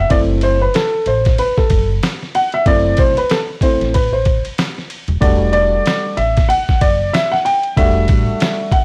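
Jazz-hop excerpt at 94 BPM with a cool, smoky mood, riding a swung 16th-note groove from a compressed, pitched-down sampler-style drum kit with a thumpy kick, medium-tuned snare, hi-hat and ride cymbal. A dark, mellow, slightly detuned upright piano sits up front and carries a solo across the whole 8.8 seconds, moving from F#m7b5 to Em11, while a woody pizzicato upright bass underpins it until 8.3 seconds. The sound is dry and gritty with vinyl crackle and a small room reverb, giving it a vintage, hardware-sampled character.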